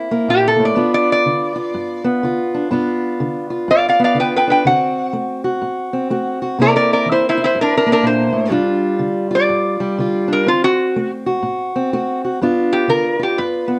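A swung 4/4 groove at 124 BPM carries this short cut from a longer acoustic country blues piece in G mixolydian, swaggering and gritty in mood. A fingerpicked steel-string parlour guitar with fresh strings holds down the accompaniment from the opening moment, its boxy tone sitting up front in the mix. At 0.3 seconds a metal-body resonator slide guitar, played with fingerpicks, takes the melody, its metallic, nasal voice placed up front and given a plate reverb. The chords move through C7, G7, D7 and a bare G5 before the phrase turns around and begins again at 12.4 seconds. Moderate studio reverb and a dark, warm production give the duo a close, earthy sound.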